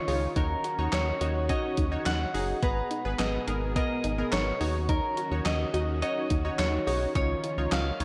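A bright, ringing concert harp melody with tape echo opens this upbeat, nostalgic synth-pop excerpt at 106 BPM, over a punchy, detuned funky polysynth comp with chorus and mellow string-machine cellos with ensemble chorus in the background, joined at 0.1 seconds by a very quiet unison pluck playing arpeggios, a round, deep analog bass up front, and a gated 80s digital drum machine with thumpy kick, handclaps, hi-hat and gated-reverb snare, all moving through D#m7, G#madd9 and C#add9 in a dreamy mix soaked in plate reverb.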